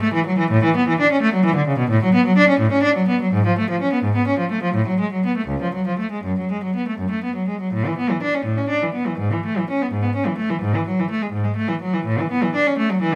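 A 6/8 pulse of roughly 75-87 BPM in dotted quarters moves with free rubato through this serene, radiant baroque-style suite movement for unaccompanied cello, beginning in F# minor and turning to A major at 7.7 s. The lone bowed cello sits up front, its gut-string, period-style voice reedy and rich with light vibrato as it ranges from C#2 to D4. Close, detailed microphones catch the playing within a moderate recital hall reverb, and this brief excerpt is cut from a longer piece, ending at 13.2 s.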